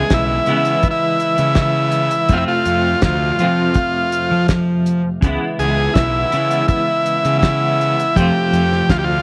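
A brief, mysterious stretch of psychedelic rock opens with a buzzy vintage combo organ carrying the melody up front, its light vibrato and slapback echo lending it an eerie shimmer. Alongside it, a clean, compressed semi-hollow electric guitar plays a double-tracked riff bathed in tremolo, while a fingered electric bass adds a round, fuzzy, overdriven low end. A thuddy, cloth-damped drum kit joins at 0.1 seconds, sitting close and dry with a fat snare, a tight kick, hi-hat and a rolled-off top. At a straight 82 BPM in 4/4, the harmony sways between C#m7 and F, keeping the mood shadowy and unresolved. A small room ambience wraps the parts together until the cut at 9.2 seconds.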